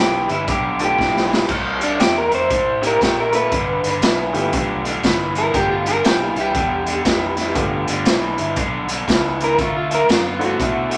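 A slightly broken-up, lo-fi lead guitar through a small old amp plays a clean, spring-reverbed solo over an overdriven garage guitar riff and a growly fingered bass in this swaggering, laid-back electric blues shuffle excerpt at 119 BPM in G mixolydian, with a gritty, boomy-kicked drum kit in a pumping small room entering at 0.3 seconds and playing a fill from 1.0 to 1.5 seconds, a woody, brilliant upright piano joining at 0.8 seconds, and chords moving from G through C9 and G9 to D9 in a moderate large studio reverb.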